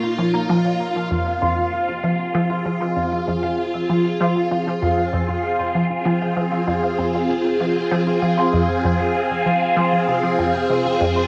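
In a straight 4/4 pulse, this cosmic, mysterious slice of sequencer-driven ambient space music moves from Bb minor to F minor. Up front, a squelchy, resonant blip pluck repeats a low riff through phaser, analog chorus and tape echo, while a bright, swirling string machine holds slow-attack sustained chords thickened by ensemble chorus and phaser. Further back, a mellow, thumb-plucked concert harp rings out arpeggios softened by a low-pass filter and tape echo, all captured as a home cassette recording in a small, wet booth.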